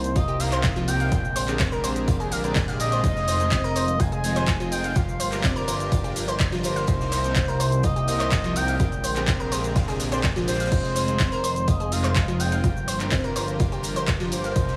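A straight 4/4 pulse at 125 BPM drives this emotional, expansive progressive house excerpt in F dorian, anchored by a punchy, tape-tinged electronic kick and a house kit of handclaps, hi-hat, shaker and crash cymbal re-recorded in a small room, with a very quiet acoustic rock kit adding faint snare and hi-hat beneath. A fat, nasal analog bass with a saturated sawtooth-and-square edge and a filter pluck holds the low end, pumping through sidechain compression. A round analog pluck spins arpeggios with a noise layer, a filter sweep and a moving notch, thrown into dub echo and chorus, while a soft unison supersaw with a sub octave adds evolving stabs in the background. Underneath, a mellow, slow-attack pad sustains chords that cycle through Cm7, Bb13, Fm7 and Gm7. On top, an expressive portamento lead sings a smooth melody between C5 and Ab5 with vibrato, chorus and dub echo, set in a dry mix with little reverb.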